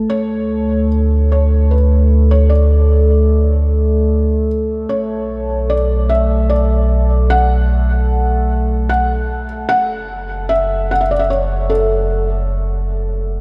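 Ambient fragment at 75 BPM in 3/4, weightless and peaceful, where a round, deep sine sub bass sits up front beneath a warbling, evolving analog drone of sawtooth and pulse-wave tones with chorus that fades out, while a felt-muted upright piano, dark, intimate and mellow with audible action noise and a diffuse ambient delay, fades in from 0.1 seconds over a D5, Bm7 and F#m progression, all held in a light small-room reverb.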